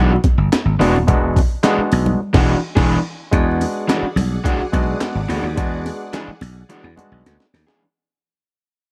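A growly, punchy slap bass drives this playful, gritty funk fragment, up front beside a compressed, sampler-style breakbeat kit with a thumpy kick, handclaps and crash, while an overdriven garage guitar accompanies and a stringy, mellow overdriven clav stabs over an E9 chord, with bright, high-tuned congas in the background. After a band accent at 2.2 seconds, a shimmering vintage string machine with soft-attack violins and ensemble chorus enters behind at 3.3 seconds as the music fades out, closing on a drum fill at 7.3 seconds. The production is dark and dry, with vinyl crackle.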